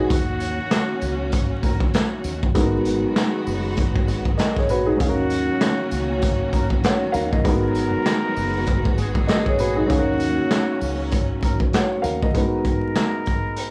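Moody and gritty, this boom-bap hip-hop excerpt sits at 98 BPM in G# dorian with a swung 16th-note feel, moving between D#m7 and G#m7. A raw garage drum kit sits up front with a boomy kick, medium-tuned snare, hi-hat and handclaps, sounding saturated and pumping in a small room with a rolled-off top, while a jingly tambourine stays in the background. A deep dub fingered electric bass gives a dark, round and punchy low end, and a woody, vintage upright piano carries the accompaniment with a cassette-tape colour. Lush bowed symphonic strings hold sustained chords with expressive vibrato, and a trumpet with plunger mute plays the melody in a breathy, wah-wah jazz style with scooped notes, light vibrato and analog delay. The dry, close sound carries vinyl crackle, and the strings and bass stop at 12.3 seconds as a brief final section begins, leaving the trumpet, piano and drums to play on to 13.7 seconds.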